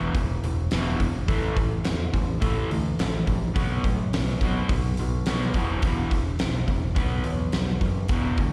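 A straight 4/4 pulse at 106 BPM drives this brooding classic rock excerpt, with a huge arena drum kit entering at 0.1 seconds: a punchy kick, fat snare and hi-hat set up front in a big room. A raw garage guitar plays a picked, double-tracked riff with overdrive and slapback echo, moving through Em, A5, B5 and E5. Beneath it, a dark, round fingered electric bass holds the low end, all heard as a live gig through the venue's PA with recital hall reverb.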